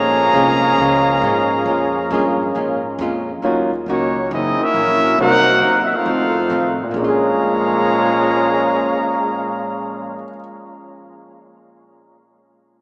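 Swinging in 4/4 at 136 BPM, this dramatic big band excerpt in Bb minor is cut from a longer piece and rides a firm swing feel from the first beat. A mellow, up-front trumpet section carries the melody with light vibrato and a smooth top, while a warm trombone section sings a second line beneath it. An electric archtop guitar, dark, clean and picked, sits in the background as accompaniment, and a pizzicato upright bass with a woody, growly tone anchors the low end. From 0.3 to 2.8 s a tight, clear trombone section holds very quiet sustained chords, and at 3.4 s an intimate upright piano enters, polished and present yet very quiet, with audible action noise and long sustain. The harmony moves from Bbm7 through Ebm7, Gb7, Cm7b5 and F7 before returning to Bbm7, all heard through a vast, echoing cathedral reverb and a small-speaker sound.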